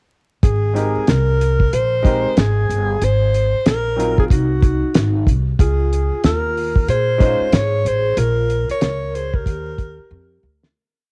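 Relaxed and warm, this short, complete jazz-hop piece rides a swung hip hop groove. A cloth-damped drum kit sits up front with a dry, dark boom-bap beat: a tight, hard kick, a fat backbeat snare and hi-hat, all with a rolled-off top. Beneath it, a woody, growly pizzicato upright bass walks with muted ghost notes and chromatic approach notes. A breathy alto saxophone leads with close-miked subtone and vibrato, stating a motif-based melody of call phrases, while a clear upright piano joins at 0.7 seconds with free comping in rootless voicings. At 4.3 seconds a metallic, ringing vibraphone with slow motor vibrato adds a harmony line mostly in thirds, its sound boxy in the small room. From 8.2 seconds the piece moves into a break and fades out, closing on a drum fill, with the cassette tape recording, vinyl crackle and small room ambience giving it a homemade lo-fi character.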